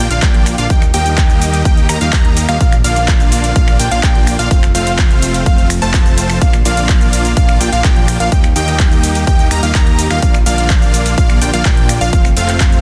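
Festival progressive house at 126 BPM in Bb major, this euphoric, anthemic clip runs 12.8 seconds and cycles through Bb, Eb and F chords in a steady 4/4 pulse. A punchy, overdriven electronic kick sits up front, entering at 0.2 seconds, while a layered big-room kit adds finger snaps, handclaps, metallic hi-hats, ride cymbal and shaker with gritty overdrive of its own. Underneath, a fat analog bass built from detuned sawtooths holds the low end and pumps through sidechain compression. Huge, bright supersaw chords carry the riff, and a catchy, plucky unison lead plays arpeggios high in the range; both share the sidechain pumping and a tape echo. A very quiet, lush pad with chorus and a slow attack sustains chords in the background, filling the space behind the synths. The mix is dry, with little reverb, and the master is dense and heavily limited in a modern style.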